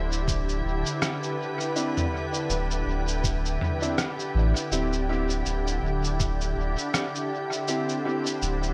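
Ambient dub with a spacious, peaceful mood, this short excerpt drifts along at an unhurried pace with a gentle swing. A soft, organ-like pad holds sustained chords up front from the start, its pure tone thickened by ensemble chorus and its own reverb, moving from Cadd9/D to D7sus4 at 4.7 seconds. Beneath it, a deep, round sub bass sits low and steady, while a lo-fi sampler-style kit of rim click, shaker and toms sounds muffled and tape-warm, trailing dub echoes. A thumpy, pitched-down electronic kick stays in the background and drops out at 6.4 seconds. From 1.8 seconds a clear upright piano adds woody, boxy stabs with audible action noise and long sustain, also cast into dub echo, all set in a light digital ambience.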